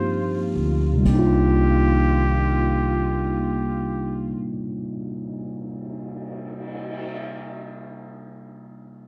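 The recording is dry, with little reverb, in this short fragment of a smoky, wistful jazz ballad in C minor at 38 BPM, swung in 4/4 and slowing over its first moments on a Cm11 chord. A trumpet with a straight mute carries the melody as soloist, its nasal, raspy tone marked by light vibrato and a soft attack. Beneath it, a mellow tine electric piano sits up front with clean accompaniment, while a bowed chamber cello section holds intimate sul tasto chords. An upright bass plays a woody pizzicato line. The trumpet, cellos and bass stop at 4.3 seconds. A brushed drum kit, which entered at 1.1 seconds, sounds distant and roomy, adding crash, cymbal swells and a boomy kick before it drops out, and the electric piano carries on to the close.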